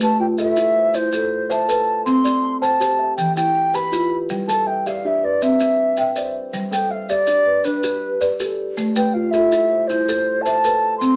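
Rippling and warm, this short cut from a longer piece sits in a southern African traditional style built on an mbira-style interlocking cycle, moving at 107 BPM in a straight 12/8. A close-miked baroque flute carries the melody up front with a pure, woody tone, crisp attack and expressive vibrato, ranging from B4 to C6. Beneath it, a buzzing marimba played with soft mallets spins arpeggios across hardwood bars, its sound round, mellow and airy. A kalimba shares that arpeggio range with fingertip plucks that ring softly inside a hollow, boxy body, while grainy maracas sit close and low in the mix. The chords cycle through Am, C, Em and G before returning to Am at 8.8 seconds, and a wet studio reverb with a short tail gives the ensemble a snug sense of space.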